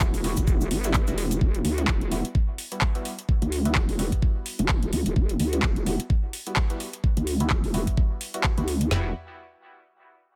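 Gritty and swaggering, this bass house passage, cut from a longer piece, runs at 128 BPM in E minor with a swung 16th-note feel, driven by an up-front, nasal vowel-sweep wobble bass that is overdriven, chorused and sidechain-pumped under a filter sweep. A garage drum kit of knocking kick, woody snare and toms sits up front, with handclaps and metallic hi-hats behind it, while a grainy cabasa plays only until 1.4 s and a band-passed sawtooth chord stab enters at 0.2 s on an Emadd9 chord, its detuned, phased tone pumping and trailing dub echo as its own filter sweeps. The mix is dry, with little reverb.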